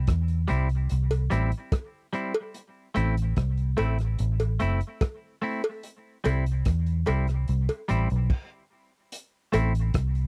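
A straight 4/4 roots reggae groove, laid-back and serious, rides on a round, foam-muted fingered electric bass up front and a gritty, saturated breakbeat drum kit with dark cymbals and a tight kick, while a bright, twangy clean electric guitar with tape echo and a close cowbell fill out the intimate 1970s-style studio sound, with a stop from 8.3 to 9.1 seconds before this cut-short passage moves on.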